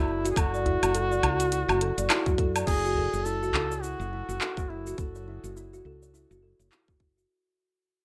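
A swung 104 BPM groove in 4/4 drives this meditative organic downtempo piece in F# minor, built on a tight, up-front electronic kick and a layered deep house kit of overdriven metallic hats, handclaps, shaker, woodblock and crash, with a deep udu sitting in the background. A round, punchy fretless electric bass pumps beneath mellow, boxy kalimba arpeggios shaded by a low-pass filter and tape echo, while a solo duduk with a soft attack, vibrato and scooped notes carries the folk-style melody through delay until 5.0 s. The band hits an accent at 2.1 s, and as the harmony moves from Dadd9/F# to F#m7 the lightly reverberant, rough home-demo mix begins a long fade-out from 2.7 s.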